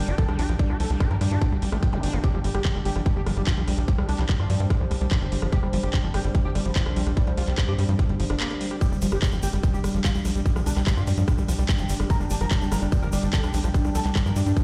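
A tight, nasal sequencer bass drives this hypnotic 146 BPM psychedelic trance excerpt beside an up-front layered electronic kick, while a thick, warbling unison lead with phaser and dub echo carries the melody over a squelchy, distorted acid bass riff, a deep, moody ambient pad, a drum kit with metallic hats, handclaps and rim clicks, a brief zap at 1.9 seconds, a grainy egg shaker from 8.8 seconds, and a very quiet pulsing gated texture joining at 9.5 seconds, all in a large, lightly reverberant room.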